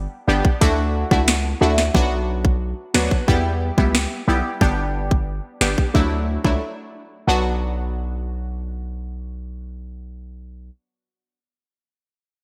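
A heavy, punchy 808-style bass with a sine body and a noise layer opens this sultry, hypnotic dancehall excerpt at 90 BPM in B minor, joined almost at once by nasal, brassy synth stabs colored by chorus, phaser and a filter sweep over chords moving from G and Dadd9 to Bm and Em. An electronic island pop kit with a tight kick, sharp snare and metallic hats drives things up front until 6.6 seconds, when a brief break leaves the bass and stabs to carry on. A lush hall reverb and bright 1980s-style digital production give the whole piece a bright sheen.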